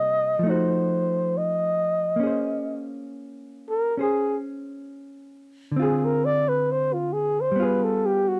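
Swung eighth notes in a slow 4/4 carry this short cut from a longer jazz piece, giving it an unhurried, melancholic and wistful feel. A breathy flugelhorn takes the melody as a solo from 0.0 to 8.4 seconds, its dark, whispered tone shaded with vibrato, soft attacks and scooped notes in a close, intimate jazz style. An electric hollow-body jazz guitar accompanies throughout, played clean and fingered with a dark sound, sitting up front but a little beneath the horn. The harmony moves through altered dominant and minor ninth colours, from F7b9 to Bbm9, then Dm7b5 and G7b9. The dry, close studio sound recalls a 1970s session, with light reverb adding just a touch of air around the two players.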